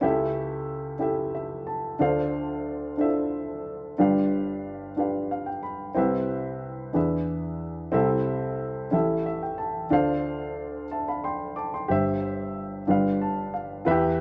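A dark, mellow baby grand piano plays alone and up front in this soulful, hopeful gospel passage, taken from a longer piece, moving in a slow 6/8 at 61 BPM through a progression that runs from A7/C# and Dm7 to G7, Cmaj7 and back around to G7. Its intimate, natural tone carries audible action noise and short sustain, with brief fills around 1.0, 5.0 and 8.9 seconds. A moderate stone-room reverb gives the live performance a sense of space.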